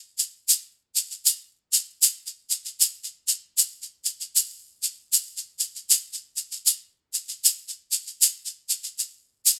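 A grainy, mellow tube shaker sits close and up front in a lightly reverberant room, carrying this short pastoral folk excerpt entirely on its own from 0.2 s to 9.6 s. The tempo is an unhurried 78 BPM in 4/4, with the eighth notes gently swung, giving the dry acoustic percussion a relaxed, homespun lilt.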